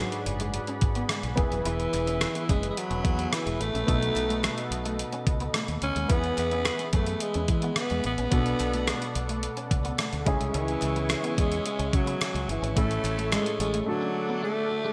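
Romantic and glossy, this 1980s-style pop passage moves at 108 BPM in E mixolydian, with a breathy, raspy alto saxophone carrying the melody up front, its vibrato and scooped notes trailed by delay. A concert grand piano with audible action noise and long sustain supports it, alongside a brassy, detuned analog pad shimmering with chorus in the background, a very quiet twangy clean electric guitar riff, and a growly, punchy fingered electric bass that stops at 13.8 seconds. A 12-bit digital drum machine with a thumpy kick, hi-hat and rim click sits prominently in gated reverb, while hollow group handclaps join faintly at 1.1 seconds, all wrapped in a lush hall reverb and bright digital production.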